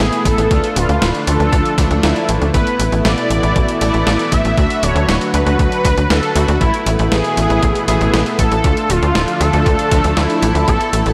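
A steady, straight 4/4 pulse at 118 BPM drives this romantic, nostalgic synthwave excerpt, where a thumpy electronic kick entering at 0.3 s and a sampler-style hi-hat and snare sit under a punchy, nasal sequencer bass up front, while a thick, detuned unison lead carries the melody through analog chorus and delay over a lush, sidechain-pumping pad with phaser and fat, brassy synth stabs in the background, all within a dreamy hall reverb as chords move between Asus2, Dm and D.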